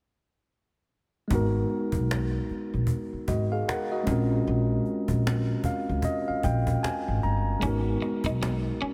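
A clean, up-front tine electric piano carries this sultry, introspective neo-soul R&B fragment, with a fill from 5.3 seconds, over G#m9 and A#m9 chords in G# dorian at a relaxed 76 BPM with a 16th-note swing. A thumpy, woody pizzicato upright bass sits close beside it while a faint, small-room cajon sits softly underneath, all set in a dreamy mix soaked in lush hall reverb. At 7.6 seconds, as the harmony returns to G#m9, a compressed, picked electric guitar at the edge of break-up adds a brief, slightly gritty second line.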